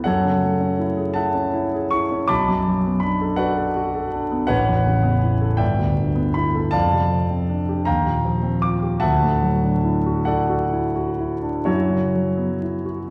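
Wistful and mysterious, this brief impressionist classical passage for solo concert grand piano drifts in a rubato 6/8, its intimate, vintage, up-front tone carrying deep bass, a smooth touch and audible action noise as lush chords move from F#m9 through A69, G69 and F69 to Dadd9 before settling on F#7sus4 at 11.7 seconds, set in a wet church-like reverb with a crackle of vinyl.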